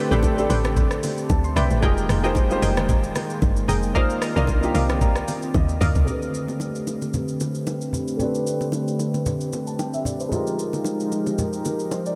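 Soaked in a huge ambient reverb, this dreamy cut from a longer amapiano track moves at 113 BPM with a lightly swung 16th-note feel and a hypnotic, late-night mood. A detuned sawtooth pad with sidechain pumping and a filtered, chorused concert grand piano with short sustain and fills carry Am11, Fm11 and Cm11 chords throughout. A woody log drum bass and bright, punchy chord stabs with tape echo drive the drop until 6.1 s, while an up-front electronic R&B drum kit with a knocking kick, metallic hats and 12-bit sampler grit plays on beside soft-handed bongos and congas in the background as a filter sweep carries the second half.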